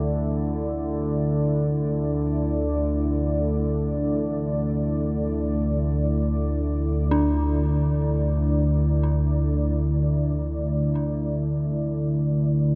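An up-front, evolving analog drone with a warbling, wave-folded sawtooth character anchors this cavernous, unsettling dark ambient piece, sounding low in free time around a Dsus2 chord. A deep, moody pad with a sub octave fades in across the whole passage, while a dry, close-miked bronze singing bowl rings with slow beating, barely audible beneath. At 7.1 s an eerie, inharmonic FM synth bell enters with arpeggios on D4 through chorus and delay, all set in a huge reverb with a 7.4-second tail in this fragment cut from a longer work.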